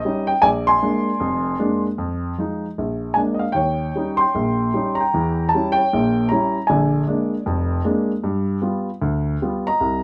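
Swinging and playful, this brief solo jazz piece, cut from a longer performance, moves with a loose, rubato feel over a blues-flavored run of changes from Bb7 through Eb7 and Edim7 to G7. A baby grand piano carries it alone from start to finish, intimate and up front, its natural tone ringing with long sustain, the action noise of the instrument audible under the notes. A moderate studio reverb gives the room a sense of space around the playing.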